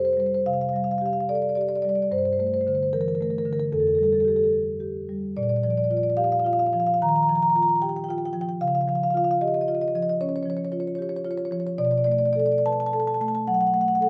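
A light reverb surrounds a solo marimba played with soft mallets, its rosewood bars sounding woody and round and sitting up front in the mix. This contemporary classical piece moves at about 74 BPM in 4/4, but the beats are uneven and the pulse breathes freely in a rubato feel. The mood is playful and warm, with the instrument ranging from a dark low F2 up to Bb5 over the 14.1 seconds of this short section cut from a longer work. The harmony drifts from Fadd9 through Gmadd9, back to Fadd9 and on to Bb, then takes colourful turns to Ebadd9 and Dbadd9 before settling on Bm7 at 11.8 seconds. The mellow, smooth tone of the soft mallets keeps even these unexpected chord shifts gentle and inviting.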